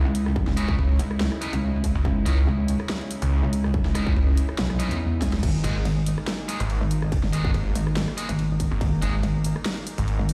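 A swung, half-time 4/4 pulse drives this aggressive, menacing heavy wobble dubstep, cut from a longer piece, where a snarling, detuned saw bass and a metallic FM wobble bass sit up front over a tape-warm dubstep kit with a huge snare and bright hats, a distorted electronic kick entering at 0.4 s, compressed, picked electric guitar stabs with dub echo, and an evolving, warbling wavetable pad with chorus and sidechain pumping that moves from C#madd9 to G#sus2, the whole mix sounding as if played on a big sound system in a bare room while a drum fill lands at 5.2 s.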